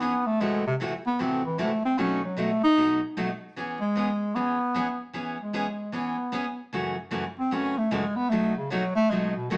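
A brisk swung 4/4 at 152 BPM drives this playful, down-home country excerpt in E major, where a bass clarinet carries the melody as an up-front, close-miked solo with light vibrato and a jazz-inflected style. Beneath it, a picked steel-string dreadnought acoustic guitar gives full-bodied, warm accompaniment, also up front, moving through chords such as Am6, B7, E6 and F#m7. Moderate studio reverb adds a touch of room around both parts.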